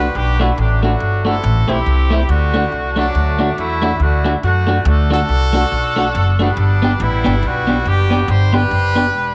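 A swung 4/4 ska groove carries this bouncy, joyful clip from a longer piece, with a woody pizzicato upright bass sitting up front, its tube saturation adding grit to the low end. A compressed, picked electric guitar teetering at the edge of break-up supplies the accompaniment and drops out at 9.1 seconds. A tight, punchy horn section plays the melody with vibrato and a tape echo as the harmony moves through D, Am and G, all set in a light small-room ambience.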